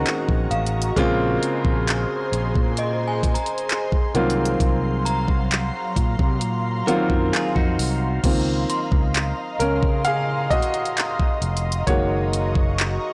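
A blown-out, overdriven sheen colors this tender, smooth contemporary R&B passage, cut from a longer piece, where an up-front baby grand piano accompanies over a round, amped fretless bass and a produced drum kit with a knocking kick, tape-warm hi-hats, handclaps and crash cymbal. An ethereal, airy pad holds slow-attack chords through a chorus and built-in reverb, while an inharmonic FM chime rings in the background with chorus and delay. A bright, twangy, direct-recorded guitar adds delayed arpeggios briefly at the opening and again around 6.9 seconds, and the piano takes a solo from 8.2 seconds as the Bbm9 and Dbmaj13 harmonies resolve back to Gb6.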